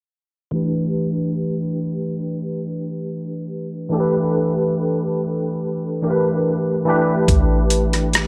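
A barky, bright tine electric piano through a combo amp opens this introspective, sultry neo-soul and R&B excerpt at 71 BPM with a lightly swung 16th feel, its ensemble chorus and filter sweep colouring a Gadd9 that moves to Asus2, before a round, woody FM bass and a gritty, pitched-down boom bap sampler-style kit with a thumpy kick, hi-hat and rim click join at 7.3 seconds in a dry, up-front mix.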